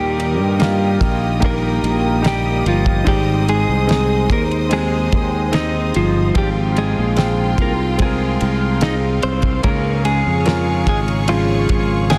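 Pop ballad in an emotional, hopeful mood, cut from a longer piece, with a clean, compressed electric guitar carrying the melody through spring reverb over a woody, slightly detuned upright piano and a very quiet, fingerpicked steel-string acoustic guitar playing arpeggios. A growly fretless electric bass with analog chorus sits up front, while a lush, distant studio string section holds sustained chords with vibrato, and a damped 70s drum kit with a fat snare, tight kick and ride cymbal enters at 0.2 s with a dry, dark, rolled-off sound. The chords move from Eb to Ab, Fmadd9/Ab and Db in small room ambience, under a dense, heavily limited modern master.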